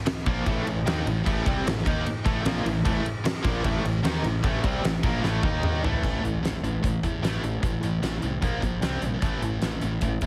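Straight, driving 4/4 hard rock cut from a longer piece, heavy with a heavily compressed radio sound and light small-room reverb: a huge arena drum kit with a fat snare and punchy kick sits up front, a growly fuzz-overdriven fingered bass sits beneath, a bright scooped high-gain guitar carries the riff with a distorted electric guitar in the background, and a double-tracked cranked stack guitar with overdrive and tremolo stops at 6.0 s, as a drum fill from 5.2 s comes to an end.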